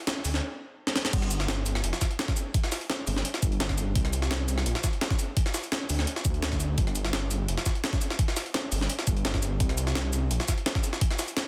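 Dreamy and rolling, this liquid drum and bass cut in G minor at 170 BPM opens with a brief build-up and a drum fill at 0.9 seconds before dropping at 1.1 seconds, where an overdriven, knocking electronic kick joins two gritty, pitched-up jungle sampler-style kits (one overdriven with crash, hats, rim click, shaker and a medium-tuned snare, the other tape-toned with filtered hats and a high-tuned snare) over a deep, rumbling, detuned sawtooth bass, all wrapped in digital ambience and a dense, heavily limited master.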